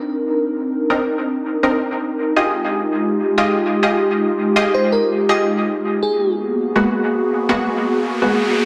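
A dense, heavily limited modern master sits in a wet plate reverb with digital ambience, giving this cut from a longer drum and bass piece a frenetic yet atmospheric character at 164 BPM in 4/4, with a light swing on the sixteenths. An airy, breathy pad with chorus carries sustained chords from the start, its filter sweeping throughout as the harmony moves through Cm9, Fm9 and Abm9. Bold, punchy orchestra-hit-like synth stabs, bright and layered, with their own reverb and dub echo, sit up front beside the pad. At 4.7 seconds a bell-like FM electric piano adds a brief, sparkling melody treated with chorus, tremolo and dub echo. An electronic riser enters at 7.7 seconds and carries the passage to its end.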